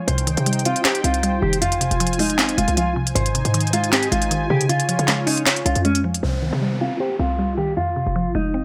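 A woody, round synth pluck with a mallet-like character opens this melancholic, hard-hitting trap piece, alongside a smooth, detuned sawtooth pad that holds sustained chords with a soft attack and long release. Almost at once a dark, clean electric guitar takes the melody, its fingered, compressed tone shaded by harmonic tremolo, tape echo and a low-pass filter. Underneath, a punchy, tight 808-style bass with a sine body and a noise layer strikes and decays, while an up-front electronic trap kit of sharp snare, crisp hi-hats and handclaps sets a half-time feel. At 6.2 seconds the drums and pad stop, and a filter sweep and an electronic downlifter carry the closing section to 8.6 seconds as guitar, pluck and bass continue. The mix is dry and close, with little reverb.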